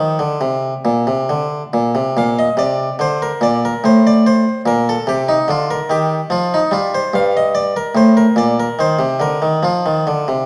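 A bright, airy solo harpsichord, plucked up front on a single set of strings in Italian style, flows with radiant rubato through a short excerpt of a baroque-style suite movement in an unevenly lilting 3/4, moving from G minor to B-flat and back before closing on Eb5 and F5 chords, all set in a wet recital-hall reverb with a dark, warm production and vinyl crackle.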